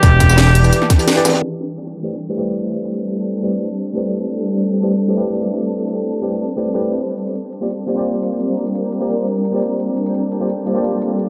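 Soulful and lush, this liquid drum and bass cut from a longer piece runs at 172 BPM in A minor, opening on a drop where a clear, vintage-gritted tenor saxophone sings a brief vibrato phrase over a smooth gliding synth bass, a tight overdriven electronic kick and a dark, gritty breakbeat kit tucked in the background, all marked by a band accent at 1.1 seconds. Throughout, the worn, slightly out-of-tune tine electric piano and a shimmering, ethereal pad with chorus and sidechain pumping carry the harmony from Em7 through Am11 and Bb69, the pad under a filter sweep from 1.4 seconds, while an overdriven drum and bass kit with cracking snare, bright hats and tambourine keeps the pulse. The echo-heavy mix sits in moderate spring reverb with a low-pass filter, and dub echo trails the drums.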